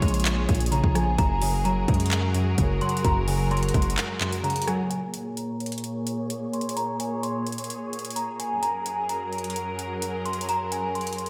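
Menacing and eerie, this half-time trap and hip hop passage, cut from a longer piece, sets a delicate, bell-like celesta melody high above a dark bed of muted, con sordino symphonic strings holding bowed chords with light vibrato. A crystalline, detuned wavetable pluck with a sub octave and chorus adds glassy digital accompaniment, while a heavy, saturated 808-style bass with a noise layer hits hard and decays. Up front, the produced trap kit drives things with a hard-clipped kick, metallic hats, handclaps and rim clicks. The harmony alternates between Bbm7 and Gbadd9, and the bass drops out at 4.0 s for a brief break before the second section opens at 4.9 s, where the pluck has already fallen away and a filter sweep runs to the end. The whole mix is soaked in a lush hall reverb, giving the celesta's sweet chime and the veiled strings a dreamy, haunted glow against the aggressive low end.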